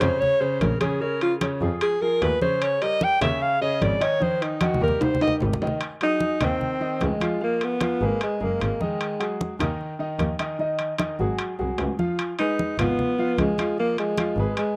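With the homespun character of a cassette home recording and a moderate spring reverb, this lively, sunny Afro-Cuban jazz fragment at 150 BPM features a breathy, close-miked alto saxophone soloing with vibrato and subtone up front, resting from 9.6 to 12.4 seconds, over clear vintage grand piano chords moving from Bbm7 through Eb7, Ab6 and Db13, a smooth bowed double bass, bright hard-handed congas, and ringing metal-shelled timbales, with a drum fill from 4.2 seconds.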